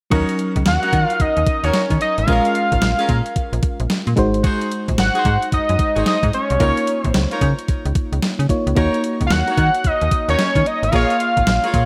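A punchy, bouncy new jack swing groove at 111 BPM in 4/4 with a swung sixteenth feel, driven by a crisp 8-bit digital drum machine whose thumpy kick, medium-tuned snare and hi-hat come up front with overdrive and gated reverb, over a snappy, metallic slap-like FM bass. In Eb dorian, a mellow FM electric piano provides accompaniment while a smooth-topped horn section with light vibrato plays stabs through chords moving from Ebm7 through Bbm7, Ab7 and Db69. From 0.7 seconds a fat, detuned analog lead carries the melody up front with chorus, all set in a lush hall reverb and bright 1980s-style digital production, cut from a longer piece.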